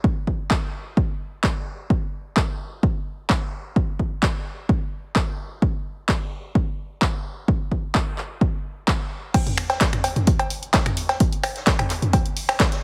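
Gritty and trippy, this short house excerpt runs at 129 BPM in a straight 4/4, built entirely from drums in a small room heavily squeezed into a compressed radio sound. A dry, punchy analog kick sits up front from the start, joined at 0.5 seconds by an analog drum machine whose cowbell, crash cymbal, finger snaps, handclaps, hi-hat and toms carry studio reverb. At the drop at 9.3 seconds, a very quiet vintage acoustic kit slips in with natural hi-hat and a medium-tuned snare.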